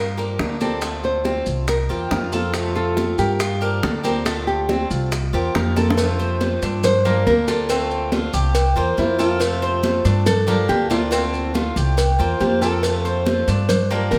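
A relaxed, danceable Cuban son and guajira groove at 140 BPM in F major opens with a dark, small-sounding fingerpicked nylon-string guitar carrying the melody, over the metallic, double-strung picking of a Cuban tres in arpeggios and a woody, thumpy pizzicato upright bass with gut strings sitting up front. At 0.2 seconds a bright, boxy picked acoustic guitar joins with swing-style accompaniment, alongside tight, high-tuned bongos and cowbell and thin-skinned congas struck with hard hands, both kept in the background, the congas sounding distant in a large room. Grainy, band-limited maracas with a vintage, mellow character sit lowest in the mix. The harmony cycles through Gm7, Dm7, C7sus4 and F, and a drum fill at 5.8 seconds leads into a second section at 6.0 seconds that continues the same progression. A wet studio reverb lends the whole ensemble a spacious sheen in this short cut from a longer piece.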